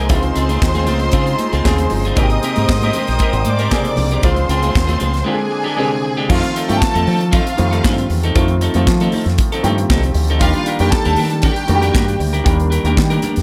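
A straight 4/4 disco groove at 117 BPM drives this joyful, danceable excerpt from a longer piece. An airy, polished acoustic drum kit sits up front, with a punchy kick, a medium-tuned snare, hi-hat, handclaps and crash cymbal, while ringing, high-tuned vintage congas with hard hands sit in the background. A bright, fingered electric bass runs through an envelope filter and is the loudest part of the mix. A picked, compressed electric guitar at the edge of break-up shimmers with lush chorus, and an intimate concert grand piano, with audible action noise and deep bass, fills out the accompaniment. A clear, focused studio string section bowed with vibrato carries a second line until 12.2 s, while a dark, nasal, reedy chamber string ensemble with gut-string tone holds sustained chords in the background until 6.3 s. The harmony moves through Dbmaj7 and Abmaj9 to a Bb13 break at 5.3 s, then settles on F7 and Ebmaj7, all in light reverb.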